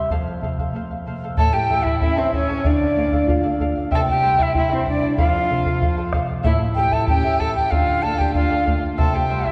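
A shimmering, fingerpicked charango and a small, thumb-plucked nylon-string guitar with audible finger squeaks open this festive yet melancholic Andean folk excerpt in D minor at 95 BPM in 2/4, joined almost at once by a round, close bombo, and after a brief break the airy cane quena takes the melody at 1.4 seconds with expressive vibrato while a smooth, bowed violin adds a second line beneath it, the ensemble ringing in the long, wet reverb of a church.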